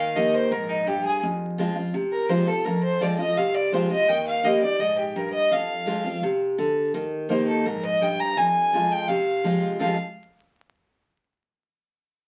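Bluegrass with a driving, haunting mood, this excerpt cut from a longer piece features a clear, focused fiddle carrying the melody with light vibrato up front, a bright, full-bodied picked steel-string acoustic guitar in accompaniment, and a woody, thumpy pizzicato upright bass sitting in the background, all heard through a wet studio reverb and the crackle of a very old 78 rpm record as the harmony moves between Eb and Fm before landing on F5 at 9.8 seconds.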